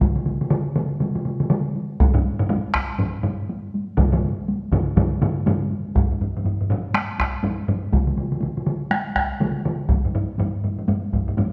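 This is Japanese traditional taiko drum ensemble music, driving and ceremonial, set in 4/4 at 121 BPM with a swung sixteenth-note feel, taken from a longer piece. Two solo taiko drum parts and two taiko ensemble parts, all struck with heavy sticks, carry the whole performance. One solo drum part and one ensemble part have a vintage, band-limited tone and sit up front, while the other solo part has a small-room sound, also up front, and the remaining ensemble part carries a small-room character. A second ensemble layer joins at 2.1 seconds, the music moves into a new section at 6.0 seconds, and one of the solo drum parts drops away at 9.8 seconds. The whole mix sits in a wet recital-hall reverb that gives the heavy strokes a resonant, ceremonial weight.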